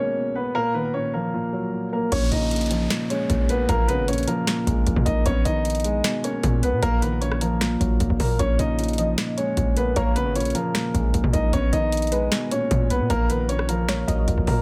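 A booming analog drum machine with a deep kick, crisp snare and metallic hats hits up front at 2.1 seconds alongside a punchy, saturated 808-style bass, driving this brooding, dark trap excerpt at 153 BPM in a half-time feel in Bb phrygian. Two low-pass-filtered concert grand pianos open the piece together, one carrying an open, long-sustained melody and the other a mellow, vintage accompaniment, over minor chords such as Abmadd9 and Bbm7, while a downlifter sweeps in with the beat. From 9.0 seconds a warbly, lo-fi pluck with chorus and digital delay adds a second line in the background, all in a dry sound.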